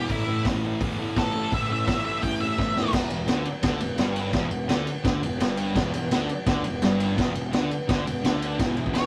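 A punchy, up-front vintage drum kit with a high-tuned snare and dark cymbals drives this raw, rowdy garage rock excerpt at a straight 170 BPM, with a fill at 2.6 seconds leading from the opening A5 into Em7. A thick, double-tracked fuzz guitar riffs low throughout, while a bright, growly fuzz bass sits in the background. An octave-fuzz lead guitar carries the melody until 2.9 seconds and briefly returns near the end, all captured in a rough rehearsal-room sound with moderate small-room reverb.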